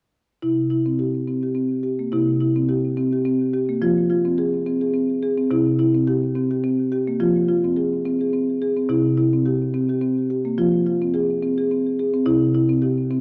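Hypnotic and meditative, this short fragment of a longer world piece centres on tuned percussion in a gently swung 3/4. A solo marimba played with soft mallets carries everything from 0.4 seconds to 13.2 seconds, its padauk bars giving a woody, round, mellow tone that sits up front in the mix. The harmony rocks steadily between C and F minor, changing every few seconds, and a brief opening phrase gives way at 2.1 seconds to a longer passage that runs to the end. Delay on the marimba adds trailing repeats, while a wet echo-chamber reverb and a small room ambience wrap the sound in a dark, warm space.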